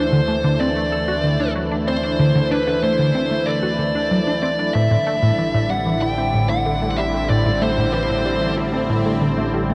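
A huge, wet ambient reverb with a long 8.8-second tail surrounds this cosmic, expansive stretch of sequencer-driven space music, cut from a longer piece and moving at 94 BPM in a straight 4/4 in A minor. At the core is a tight, driving sequenced synth riff, a detuned blend of sawtooth and square waves with a fast filter pluck, coloured by chorus, phaser, delay and a cassette-tape grit. Beneath it, an airy, detuned pad holds sustained chords with slow filter swells and a bright noise layer, while a warbling, vintage analog drone supplies the bass with pulse-width movement and fades in over the whole clip. Up front, a distorted fuzz lead guitar plays a picked melody through delay until it stops at 8.5 seconds. From 0.5 seconds a very quiet, dark, breathy tuned-noise texture drifts in like wind, and the harmony shifts from D5 to A minor at 4.7 seconds.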